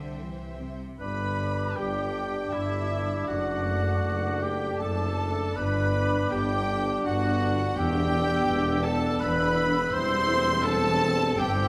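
In a triple metre with uneven, rubato beats, this tender classical passage, taken from a longer work, opens with strings alone. Lush violins carry the melody while a second violin line sits close behind in the background. Very quiet violas supply smooth accompaniment, and a clear cello section and distant double basses hold the bass. At 1.0 seconds the winds and brass join: a close-miked oboe and a bright, roomy clarinet share a second line, while an airy, hollow silver flute sits high and distant above them. A mellow bassoon adds accompaniment, a dark French horn section sustains soft-edged chords, a tight trumpet section places gentle stabs, and a tuba reinforces the low end. A wet recital hall reverb gives the warm mood a spacious glow as the harmony moves from G through D/F# and Em7 to C/E.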